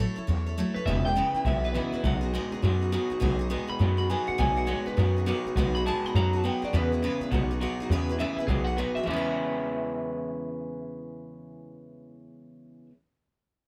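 Rock with a rollicking, rowdy swing at 205 BPM in E major, this short cut from a longer piece rides on a woody, thumpy upright bass played pizzicato up front. Two twangy, slightly broken-up electric guitars through a small old amp stand out: one carries the melody, washed in spring reverb and analog delay, while the other, sitting up front, enters at 0.9 seconds with a riff. A bright, full-bodied picked dreadnought acoustic fills in the accompaniment beneath sixth chords on E, A and B, all in a lightly reverberant room.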